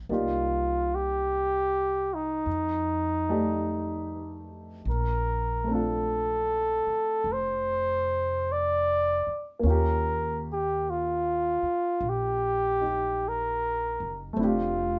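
Recorded live in one room with light reverb, this intimate, late-night jazz ballad excerpt sets a veiled, forceful bucket-muted trumpet up front over a baby grand piano with audible action noise and short sustain, and a woody pizzicato upright bass, all moving through an easy swing feel.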